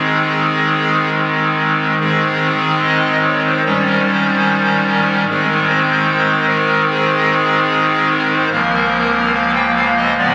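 Classical chorale-style music for solo pipe organ, this short passage cut from a longer piece moves at a free, rubato 73 BPM in 4/4, settled in Ab major with a reverent, majestic air. The organ speaks through a clarinet reed stop with baroque voicing, its hollow tone shaded by tremulant and placed up front, ranging from a deep Db1 to G5 above. The harmony rests on Ab, shifts to Eb7 over an Ab bass at 3.7 seconds, returns home at 5.3 seconds, and closes on Bbm over Db at 8.5 seconds. A brief opening phrase gives way at 2.0 seconds to a longer second section that runs to the cut at 10.3 seconds. The sound is drenched in a long church reverb, captured on a phone in the room and further colored with club reverb and compression, leaving the top end dull and muffled.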